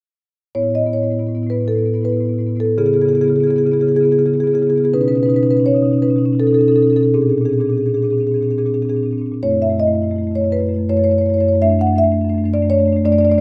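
Warm and flowing, this contemporary classical excerpt for solo marimba moves at 82 BPM in a rubato 3/4. The soft-mallet rosewood bars sound woody, round and up front from 0.5 to 13.4 seconds, spanning F#2 to F#5 through lush extended harmonies from Asus2 to Dmaj9/F#, captured with close, detailed microphones in a moderate recital hall reverb.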